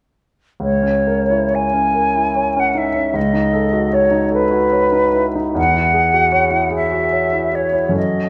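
In a rubato 6/8 at 42-52 BPM counted in dotted quarters, this hazy, wistful impressionist classical passage in C# minor pairs an airy silver concert flute with vibrato and tongued notes, singing the melody between B4 and G#5, with a clear concert grand piano of intimate, polished tone, deep bass, long sustain and audible action noise, its chords moving from C#m6 through B9/C# to E69, the duo heard together from 0.6 s in a moderate scoring-stage reverb with a dark production.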